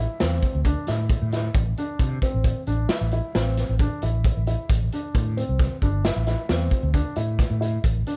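An 8-second excerpt of brooding, tense progressive instrumental band music moves in a straight 7/4 at 134 BPM in A minor, with a raw garage drum kit of hi-hat, punchy kick and medium-tuned snare entering at 0.2 seconds, gritty and saturated with a pumping small-room sound and a rolled-off top. Up front beside it, an amped fretless electric bass with lush chorus carries the low end, while a warm baby grand piano plays arpeggios more quietly in a narrow middle register. The harmony moves from Am to D5/A and back to Am, all within a dark, close-sounding production.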